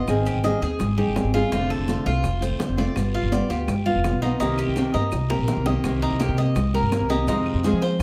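Closely miked with light reverb, this sultry, danceable Cuban son and guajira excerpt puts a bright, fingerpicked nylon-string guitar with audible finger squeak and a dark, thumpy pizzicato upright bass up front, while a metallic, double-strung Cuban tres picks arpeggios over chords moving from Abmaj7 through F6 and G7 to Cm7, backed by high-tuned congas and grainy maracas in the background, very quiet round bongos, woody claves and a raspy guiro, with a drum fill at 5.1 s leading into a new section at 5.8 s.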